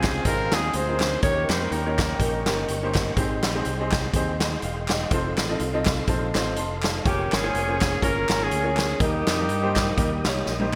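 Soulful and hopeful, this swinging uptempo gospel excerpt puts a smooth, up-front horn section on the melody, dropping out at 2.6 seconds and returning at 7.0. Beneath it sit a woody, intimate upright piano that adds fills, a soft, flute-like tonewheel organ through a rotary speaker, and a fingered electric bass. A punchy big-band drum kit with gated reverb ends on a fill at 10.5, alongside very quiet, crisp group handclaps, all in a bright 1980s-style digital production with plate reverb.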